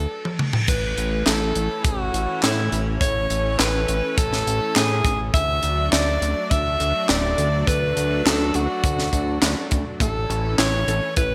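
A straight 4/4 groove at 103 BPM sets up this nostalgic, romantic synthwave excerpt in A major, with a tight funk drum kit entering at 0.3 s on a fill alongside an electronic reverse cymbal before the punchy acoustic kick arrives at 0.7 s. The up-front kit brings a high-tuned snare, handclaps, hi-hat, toms and crash, its gated reverb giving the hits a classic 1980s snap. Underneath, a fat, saturated sawtooth bass and a lush, detuned unison pad with chorus both carry a sidechain pump, the pad sitting softly in the background as the harmony moves from A to D and back to A. Up front, a clear alto saxophone sings the pop-style solo melody with vibrato across E4 to E5. In the closing stretch from 10.0 s, a round analog pluck adds chorused, delayed arpeggios, all set in a bright digital production with a moderate hall reverb and a touch of small-room ambience.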